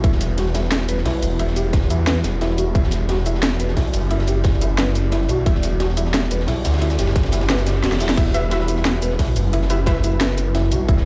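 Dark technical drum and bass at 177 BPM in E minor, this futuristic excerpt from a longer piece centres on an Emadd9 chord. A snarling, growling sawtooth bass sits up front with overdrive and sidechain pumping, alongside a tight, layered electronic kick and a produced drum and bass kit whose cracking snare, crash, hi-hat and shaker drive the groove. Underneath, a gritty, saturated breakbeat kit with dark cymbals, a high-tuned snare and a rolled-off top adds texture, while a deep, evolving pad with chorus and reverb holds sustained chords in the background. A soft, felt-muted upright piano traces intimate arpeggios through a digital delay, pumping with the sidechain. A very quiet reverse cymbal arrives at 7.7 seconds and a drum fill at 7.8 seconds, both running to 8.2 seconds. At 8.3 seconds a bold, punchy orchestra-hit-like synth stab with a bright filter sweep, reverb and delay enters, all set in large studio reverb as if played on a big sound system in a bare room.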